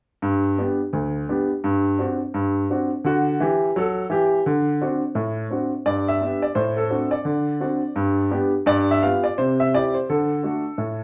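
Exuberant and playful, this stride piano excerpt swings along at 171 BPM in G major, a lone upright piano carrying the whole performance from 0.2 to 11.0 seconds across a range from D2 to F5. The piano's tone is clear, woody and natural, sitting up front even as a wet club reverb places the listener further back in the room. Cut from a longer piece, it moves from an opening section into a second one at 5.9 seconds, where the harmony passes from G through D7 chords back to G, then steps through G7 and C before landing on D.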